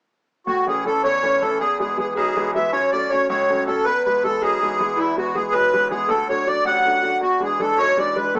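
A 6/8 Celtic jig moves at 107 beats per minute in dotted quarters, with a straight feel and a lively, cheerful spirit, in this short cut from a longer folk piece. The accordion carries the melody from 0.5 to 8.4 seconds, up front with a reedy, sweet voice and a light tremolo tuning that gives it a gentle shimmer. Beneath it, a clear upright piano plays the accompaniment over the same span, its woody, smooth, vintage tone sitting lower in the mix. The harmony moves from A through E and F#m, back to E, then on to D and E7, keeping the tune bright and rolling forward. The pair sound like a band playing live in one room, wrapped in a wet studio reverb with a short tail and heard through a small speaker.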